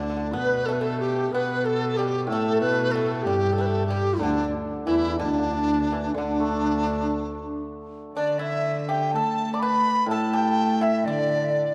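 Chinese traditional chamber music, graceful and pastoral in a free rubato flow, where an airy, buzzing large dizi carries the melody up front with soft-edged vibrato while a second, purer dizi sits in the background, a sul tasto cello floats smoothly beneath, a dry fingerpicked pipa adds percussive touches, and a bright, shimmering hammered dulcimer rings in accompaniment, all set in a moderate concert hall reverb with a dark, warm production in this brief fragment of a longer piece.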